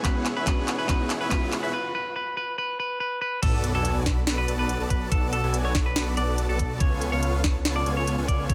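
Future bass at 142 BPM in a half-time 4/4 feel, lush and emotional in B dorian, this cut from a longer piece builds over a drum fill and break before the drop lands at 3.4 seconds on an impact, moving from E69 through Bm7 to C#7b13. A bright, clean semi-hollow electric guitar carries the picked melody up front with tape echo and sidechain pumping, over a huge, compressed supersaw riff with vibrato, a soft, round pluck that sits dark in the background only through 1.7 seconds, and a thick, detuned saw bass with chorus and saturation that enters at the drop. A knocking, tape-warm layered kick sits forward alongside a trap kit with a sharp snare, crisp high-passed hats, claps and crash, while a riser and sub drop sweep beneath, all in light reverb.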